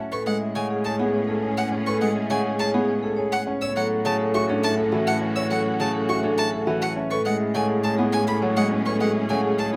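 A straight three-beat pulse drives this short excerpt of minimalist classical pattern music, its meditative, hypnotic mood built from gently repeating figures. A vibraphone played with medium hard mallets carries the melody with a metallic, ringing tone and a slow motor vibrato, set in a boxy small-room sound. Beneath it a fingerpicked Celtic harp supplies warm acoustic accompaniment, while a clear, intimate concert grand piano adds arpeggios from the background, its action noise audible and its notes sustaining long. A single close violin spins smooth, even arpeggios high above, a bowed string section holds focused sustained chords in the background, and a rich, up-front cello anchors the bass on a low A. The harmony moves from Amaj9 to a rootless Dmaj7 over A at 3.6 seconds and back to Amaj9 at 7.1 seconds, all bathed in light reverb.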